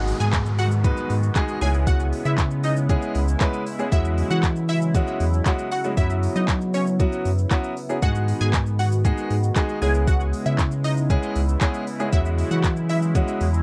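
A deep, full sine sub bass with an added octave sits up front in this energetic, bittersweet dance-pop excerpt, its fast-attack, sustained notes pumping against the sidechain in a steady four-four. An electronic R&B drum kit with a soft kick, smooth hi-hats, handclaps and shaker carries a straight, tape-warm groove close to the listener, while a clear, polished baby grand piano supplies present accompaniment and a brief fill at 3.2 seconds. Over this, a lush, punchy unison pluck built from detuned sawtooth voices plays the bright melody, decaying through a filter sweep, phaser and tape echo, and it also pumps with the sidechain. An evolving, detuned sawtooth pad with a slow attack, filter swell and chorus holds sustained chords in the background, and a very quiet electronic downlifter ends by 3.9 seconds. The harmony cycles through G#m7, C#m7, E69 and F#7sus4, and the dry, close sound recalls a 1970s studio with little reverb.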